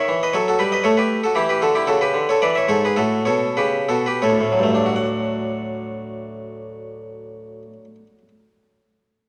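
A solo Flemish-style harpsichord opens this short fragment of a baroque-style suite movement in D major. Its bright, plucked single set of strings sits up front and spans D2 to F#5 in a serene, dance-like 3/4 at 77-122 BPM with rubato phrasing. The opening passage slows from 0.6 to 5.0 seconds as the chords move from B7 through Em7 and A7 to settle on D, where a second passage begins and the harpsichord plays until 8.3 seconds. Moderate concert hall reverb surrounds the instrument, and a worn, warbling cassette tape quality adds warbly pitch drift.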